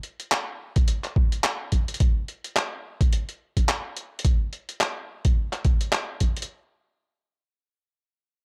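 A sampler-style boom bap drum kit of handclaps and hi-hat, pitched down and compressed, opens this funky, gritty glitch hop fragment with swung sixteenths, joined at 0.8 s by a thumpy, tape-warm electronic kick, both parts sitting up front in a small room ambience under light digital reverb.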